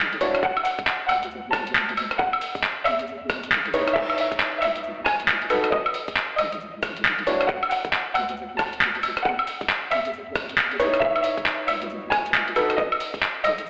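A swung two-step garage groove in 4/4 carries this soulful, moody UK garage excerpt, driven by a gritty, pitched-up breakbeat kit of hi-hat, shaker, rim click, woodblock, handclaps and crash cymbal that sits up front with a compressed, tape-warm, small-room character. A tight, layered electronic kick runs beneath it, while a deep, dark wobble bass with a rounded sine-like tone hums low in the mix, thickened by chorus. A clear studio violin section carries the bowed melody high above, smooth and even with gentle vibrato, trailed by digital delay. Vintage grand piano stabs, mellow and up front, appear briefly at 0.2 seconds, return at 3.7 seconds and again at 10.8 seconds, outlining a looping progression of D, E5, C#m9 and B that closes on B7. The whole track sounds as if played on a big sound system in a bare stone room and bathed in a lush hall reverb, with a telephone-like colouring.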